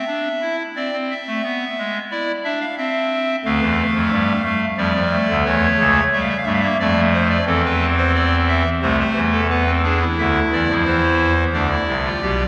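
A hollow clarinet reed stop on solo pipe organ, voiced in baroque fashion with a touch of chiff and placed up front, carries this serious, contemplative three-part fugue in triple metre through a long, wet church reverb in a short passage cut from a longer piece.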